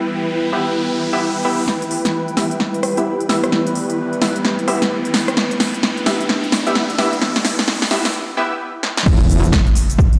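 Swung 16ths at 130 BPM in 4/4 drive this swaggering, bouncy bass house excerpt in E minor, where a bright, resonant sweeping pad and a cloudy granular pad sustain an Em chord beneath nasal, orchestra-hit-like synth stabs with dub echo and an electronic riser and impact, while from 1.7 s a punchy, overdriven big-room drum kit with crisp hats builds through filter sweeps and fills until the pads stop at 8.1 s for a break, and the drop lands at 9.1 s with an aggressive metallic wobble bass and a layered electronic kick up front in a large plate-reverb room.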